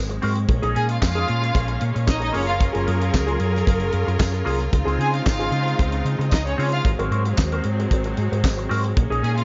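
A small room with a muted top end frames this glamorous, joyful 113 BPM disco excerpt, where a dry, damped 70s drum kit with fat snare, tight kick, hi-hat and handclaps sits up front beside a dark, round hollow-body short-scale fingered bass, while a slightly broken-up, lo-fi electric guitar through a small old amp adds wah accompaniment, a brilliant string section holds intense vibrato chords, a rich, distant violin section enters at 0.8 seconds with a second line through tape echo, and a jingly vintage tambourine rides in the background over Bbm7, Gbmaj9, Dbmaj7 and Ab9.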